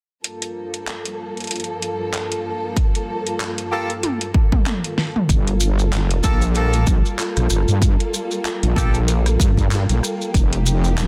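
Gritty and swaggering, this glitch hop excerpt in G minor rides a swung 95 BPM groove, opening on lush, bowed strings pumping under a pop kit with a fat, clipped snare and metallic hats, joined by a punchy electronic kick at 2.8 seconds, brilliant horn stabs trailing dub echo from 3.7 seconds, and a drum fill before a heavy, detuned wobble bass and grainy maracas arrive at 5.3 seconds, with a faint, warbling tape-like pad drifting in at 7.3 seconds over a dense, heavily limited mix.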